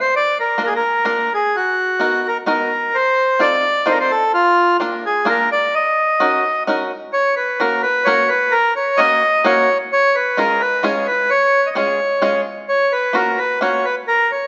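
Bittersweet and nostalgic, this fragment of a musette waltz moves in a straight 3/4 at 129 BPM, opening in Eb minor and turning to F# major at 7.1 s. A reedy, hollow accordion with a vintage, band-limited tone carries the melody up front, while a twangy, percussive bluegrass banjo played with fingerpicks enters at 0.6 s as acoustic accompaniment. Both sit close, framed by a moderate recital hall reverb.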